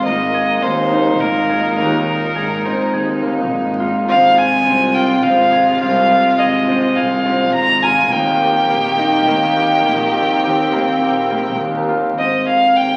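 Hopeful and shimmering, this short excerpt of contemporary chamber music moves in an uneven 7/4 at 104 BPM in Ab major, cut from a longer piece. A bright, biting solo violin carries the melody up front with light vibrato, an airy bow and real intensity, reaching up to Bb5. Beneath it, a concert harp sits up front and mellow, its fingerpicked arpeggios ringing throughout, while a clear studio string section holds sustained chords with a smooth top until about 12.2 seconds. A single bowed double bass adds a rich, focused low line with vibrato, entering at 0.1 seconds. The harmony drifts from Absus2 through Fm/Ab and Eb before settling on Abadd9. The whole sits in a wet recital hall reverb, overlaid with the crackle of a very old 78 rpm record.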